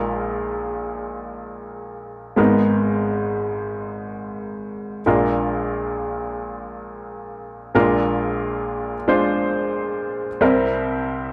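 Folk solo upright piano in free time, heartfelt and hopeful, its woody, intimate tone sitting up front with audible action noise as chords move from Bb7sus4 through Abmadd9 and Bb7 to a closing C7 at 10.4 seconds, all set in a moderate studio reverb that captures a live-room feel in this short excerpt cut from a longer piece.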